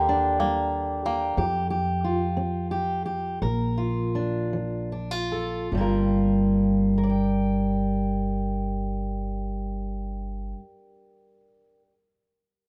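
A slow, lilting 6/8 pulse of roughly 48-61 BPM, easing down between 1.4 and 5.7 seconds, carries this haunting, melancholic acoustic folk piece in G minor through Ebmaj7, Fsus2, Bb and Gm7. Up front, a dark, full-bodied jumbo steel-string guitar is fingerpicked throughout alongside a woody pizzicato upright bass, while a twangy, percussive bluegrass banjo played with fingerpicks adds arpeggios only in the opening moments. Small-room ambience gives this excerpt, cut from a longer piece, the rough, intimate feel of a home demo.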